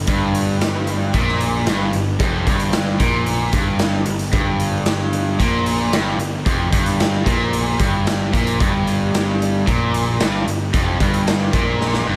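Classic rock with a driving, sunny feel, this short cut from a longer piece sets a cranked stack guitar playing a bright, overdriven riff up front over a crunchy overdriven guitar in the background, a growly fuzz bass, and a raw garage drum kit whose gritty, saturated hits and punchy kick ring in a pumping stone room, closing on a drum fill at 11.8 seconds.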